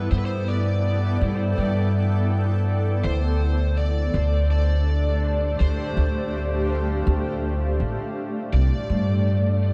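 Lightly reverberant and spacious, this meditative ambient dub excerpt at 82 BPM in D dorian sets a woody, pizzicato upright bass up front beneath a cloudy, evolving granular pad of sustained chords, while an overdriven electric slide guitar, played with fingerpicks, carries the melody through lush chorus and dub echo as the harmony moves from G to Dm7 at 3.0 seconds and returns to G at 8.9 seconds.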